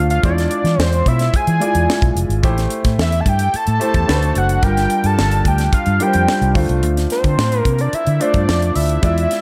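A fat analog lead carries the melody up front, its detuned sawtooth and square tones riding a sub octave with a fast attack, sustained notes, vibrato and a phaser. The piece is polished 1980s jazz-funk pop at 109 BPM in 4/4 with a straight feel, set in D minor with tuning at A4 = 441 Hz, and its mood is slick and nocturnal. A concert grand piano supplies the accompaniment with a natural, intimate tone, deep bass, long sustain and audible action noise, all dressed in lush chorus. Underneath, a vintage muted fingered electric bass sits prominently in the mix, dark, round and punchy, while a tight funk drum kit of hi-hat, kick and high-tuned snare sounds dry and airy, entering at 0.1 seconds. The harmony moves from E7b9 through Am7, D7 and Gm7 to Dm7, and a moderate plate reverb leaves the mix dreamy and soaked in this short excerpt from a longer piece.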